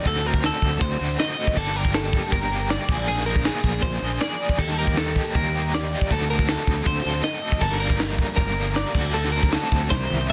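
A straight 4/4 pulse at 158 BPM drives this intricate, restless math rock and midwest emo passage, with a crisp fusion drum kit sitting up front: a high-tuned snare, tight kick, hi-hat, toms and crash in a small, pumping room, closing on a fill at 9.9 seconds. A compressed, clean twelve-string electric guitar with phaser picks arpeggios over a bright, double-tracked overdriven guitar riff carrying tremolo, while a dark, round fuzz bass holds the low end through harmony moving from D7b9b13 to Gmadd9, Bb7 and Ebmaj7 before landing on D7. The sound is dry and dense, with a heavily limited modern master, and the passage is cut from a longer piece.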